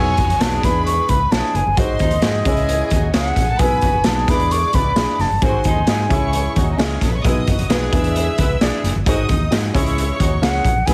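A breathy concert flute carries the melody in this joyful, uptempo 1960s-style soul excerpt at 132 BPM in 4/4, singing with vibrato and a crisp attack from the start, pausing at 7.0 seconds and returning briefly at 10.4 seconds. Beneath it, a tight horn section with octave doubling and a lush bowed violin section hold second lines, both softer in the mix, while a dark, woody, slightly detuned upright piano fills in the harmony. A round, foam-muted electric bass gives a punchy, amped low end. From 0.2 seconds a saturated, gritty drum kit sits up front with a punchy kick and medium-tuned snare in a pumping small room, joined by very quiet, ringing congas. The uplifting chords cycle through B, E7, G#7 and C#m, and the whole mix has a heavily compressed radio sound with light reverb and studio ambience.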